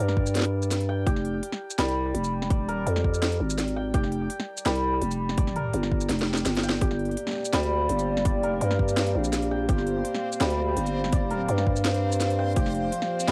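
Half-time drum and bass in G minor at 167 BPM with a slight swing, this tense, dark excerpt opens with shimmering hammered santur arpeggios through cassette tape and analog delay over a growling, buzzy 808-style bass, a tight electronic kick and a kit of cracking snare, crisp hats and shaker, then after a drum fill a detuned, nasal analog pad with chorus and sidechain pumping enters at 6.8 seconds on Gm7, joined at 7.8 seconds by a dreamy reversed granular texture in the background, all in a lightly reverberant home cassette recording.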